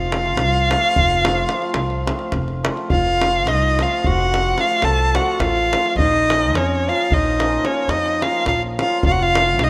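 Balkan folk in the manner of a Balkan wedding band, this short cut from a longer piece moves in a lopsided 11/8 with a straight feel, its mood both bittersweet and fiery. A single bowed violin sits up front carrying the melody, its smooth top shaped by vibrato and portamento in an expressive voice. Beneath it a warm clarinet in a classical style traces a second line, while a pizzicato upright bass with gut strings gives a woody, thumpy foundation. A hammered cimbalom adds shimmering, ringing accompaniment, and a tight davul, with a small-room sound of its own, drives the percussion. The harmony rests on F, shifts to Bb minor at 6.0 seconds and returns to F at 9.0 seconds, all bathed in a moderate, lush hall reverb within a rough home-demo mix.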